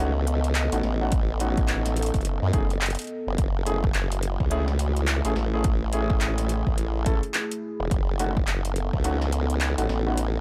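Swung 16ths at 106 BPM in 4/4 drive this swaggering, funky glitch hop cut, where a punchy electronic kick and a pop kit of fat snare, metallic hats and handclaps, both overdriven, sit under an up-front, compressed formant-sweep wobble bass with chorus and tube saturation, while warm grand piano stabs with analog delay and a deep, detuned analog pad in the background, thick with chorus and phaser, pump to the sidechain over B7, F#m7 and B7/F#, captured as a dry, gritty hardware recording with little reverb.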